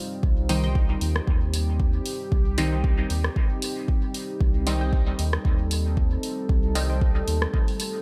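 A deep, moody pad opens this nocturnal, meditative dub techno excerpt, holding a sustained C minor chord with a warbling, vintage character, chorus and built-in reverb, and it breathes with sidechain pumping throughout. Almost at once an overdriven electronic kick sits up front with a round analog bass whose sawtooth, sine and triangle tones evolve beneath it, also pumping against the beat. From 0.5 seconds two filtered dub chord stabs enter, both muted and detuned with a plucky filter: the lower one swirls through a phaser, while the higher riff sits faint and dark in the background with chorus, and both trail off into dub echo. A deep house kit of hi-hat and rim click, with gated reverb and dub echo, adds a lightly swung pulse that carries on to 7.9 seconds. The bright 1980s-style digital production and light reverb keep the hypnotic, single-chord groove clear and spacious.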